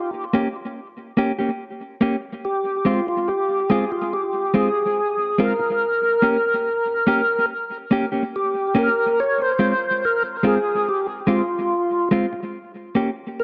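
A fat, lightly overdriven tonewheel organ with key click, chorus vibrato, slow rotary speaker and tape echo opens this laid-back, warm reggae excerpt at 71 BPM and takes the solo over Bbm6, Abmaj13 and Ab6 chords, while a dark, clean, compressed electric guitar with its own tape echo joins up front at 0.3 seconds, all within a moderate spring reverb and an echo-heavy mix.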